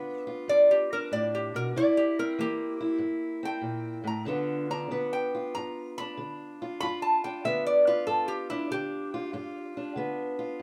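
A lap resonator guitar, played with fingerpicks and a steel bar, carries a metallic, nasal slide melody up front in this swaggering, soulful acoustic country blues fragment, moving over G7 and C7 with a swung feel. Beside it, a dark, boxy parlour-style steel-string acoustic guitar is fingerpicked as accompaniment, also up front, and plays on until 10.6 seconds after the slide melody stops at 9.9 seconds. Light reverb gives the pair a touch of room.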